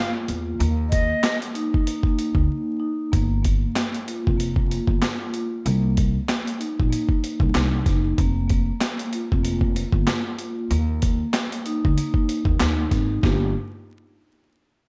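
Up front, a compressed, pitched-down sampler-style drum kit with a thumpy kick, high-tuned snare, handclaps and hi-hat anchors this gritty, moody boom-bap hip-hop excerpt at 95 BPM in G minor, swung on the sixteenths and re-recorded in a large room. A woody pizzicato upright bass with steel strings sits beside it, while a mellow, band-limited vibraphone with soft mallets and slow motor vibrato carries vintage, tape-worn chords moving from Fsus4 through Gm7 and Cm7, and an airy metal flute with a soft attack and delay offers a brief melody that ends at 1.4 seconds. Vinyl crackle and small room ambience hang over the track, and a short break arrives from 2.5 to 3.1 seconds.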